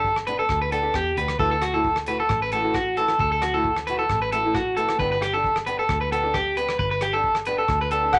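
A twangy, slightly broken-up electric guitar sits up front with picked arpeggios over a boxy, dark acoustic guitar, a round, foam-muted fingered bass and a dry 70s drum kit of hi-hat, tight kick and rim click. This carefree, danceable highlife fragment moves at 133 BPM in a straight 4/4 from G to Dadd9 and back to G, all in a small, moderately reverberant room. Only at 8.1 s does a vintage, subtone clarinet arrive up front with a single scooped F#5 carrying light vibrato as the cut ends.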